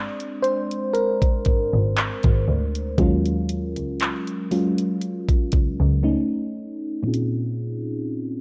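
A slow, moody late-night contemporary R&B groove at 59 BPM in 4/4 rests on a trap drum kit with a knocking kick, bright hi-hats and handclaps, lightly swung on the sixteenths in Bb minor. A round, dark FM electric piano with chorus and a low-pass filter leads over Bb7, Ebm11, A and Bbm11, joined at 1.5 seconds by a nasal, boxy bowed double bass with expressive vibrato and portamento. After a break at 6.0 seconds, a filter sweep on the electric piano closes the cut from 7.0 seconds, all dry and up front beneath a worn, warbling cassette-tape pitch drift.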